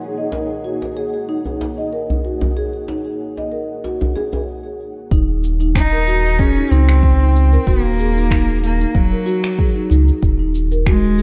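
A straight 4/4 pulse at 94 BPM carries this organic downtempo piece in Eb dorian, cut from a longer work, with an earthy mood and a dark, warm production. Over an Ebm7 chord, a saturated, up-front djembe plays beside a mellow soft-mallet marimba whose arpeggios pass through a digital delay, while an ethereal, airy pad holds sustained chords with ensemble chorus, tremolo and sidechain pumping. The pad and djembe stop at 4.5 seconds, leaving the marimba through a brief break before the harmony moves at 5.1 seconds to an Eb7 chord that omits its third. There a deep, layered electronic kick, a tape-tinged shaker and finger snaps, and a round, up-front analog bass all arrive together. At 5.8 seconds a single close, clear cello takes the melody with light vibrato and an airy bow, roughened by vintage 12-bit sampler grit and echoed by digital delay, all set in a light studio reverb.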